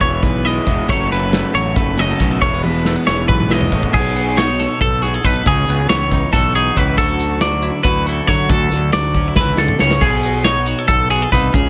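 This dry, close-sounding recording is a short cut from a longer math rock and midwest emo piece, playful and intricate, moving in 7/8 with a straight feel. A compressed, twangy twelve-string electric guitar sits up front with clean, picked chords, while a second twelve-string plays bright, clean arpeggios high up, further back in the mix. A double-tracked, crunchy overdriven guitar adds a bright riff through the opening section until 3.9 seconds. Underneath, a fingered electric bass growls with warm, punchy fuzz, and an acoustic studio kit of kick, snare, hi-hat, toms and crash sounds up front in a pumping room, with a punchy kick and medium-tuned snare. A drum fill from 2.6 seconds bridges into a second section at 4.0 seconds, where rich extended chords such as B13, C#m11 and Dmaj9 colour the harmony, and another fill arrives at 9.4 seconds.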